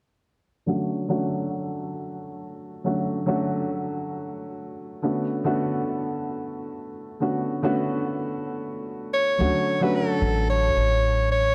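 Sunset chillout at 110 BPM in D major with a relaxed 16th-note swing, this smooth, relaxed excerpt opens with a dark, boxy baby grand piano under a low-pass filter sweep and delay, voicing Dmaj7 and Bm9 chords up front until a mellow soprano saxophone solo with a smooth top enters at 9.1 seconds, joined at 9.4 seconds by a woody pizzicato upright bass with tube saturation, all set in a lush hall reverb.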